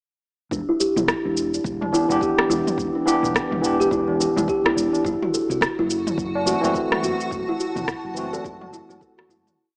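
An earthy organic downtempo piece in E minor at 106 BPM, tuned slightly low, opens at 0.5 s with a soft, woody kalimba playing a mellow arpeggiated sequence through a low-pass filter that sweeps over the whole track, with analog delay trailing its fingertip plucks. Beneath it sit a growly, round fretless bass in a dotted rhythm, a deep electronic kick tucked in the background, and an up-front layered beat of shaker, low tom and rim click, both drum parts carrying studio reverb over a swung 16th-note feel. High-tuned tabla with a short ring soon joins, and a bright, clean tine electric piano adds sparse echoing chord stabs in drop-2 voicing, pumping with sidechain and analog delay. The harmony moves from Em7 to F#m7b5, and at 5.9 s a cloudy, detuned granular pad drifts in with a slow attack, long release and its own reverb, also pumping. The mix has a dry, gritty hardware character with cassette tape and small-speaker coloring under light reverb, and it fades out from 6.6 s to the end.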